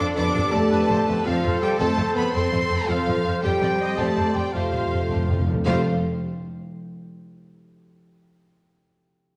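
Cinematic, heroic adventure film score in a soaring mood, moving at 110 BPM in a straight 12/8 in F lydian, with a tuning slightly under standard pitch. A symphonic violin section carries the smooth, warm melody up high. An airy, distant flute, a dark clarinet and a woody, very quiet chamber violin section support it from the background with second lines. Lush violas fill in the accompaniment, mellow French horns hold sustained chords, and a soft-edged trumpet section adds tight, close-miked stabs. Rich double basses anchor the bass on F, joined by distant cellos. The harmony passes through Gadd9/F, F and Cm/F before settling on Fadd9, and at 4.5 seconds the calf-headed timpani come up front with a dry, close fill. Most of the orchestra falls away near 5.9 seconds, leaving the fingerpicked concert harp ringing out its arpeggios alone until 7.8 seconds. Everything sits in a wet scoring-stage reverb with a dark, warm production.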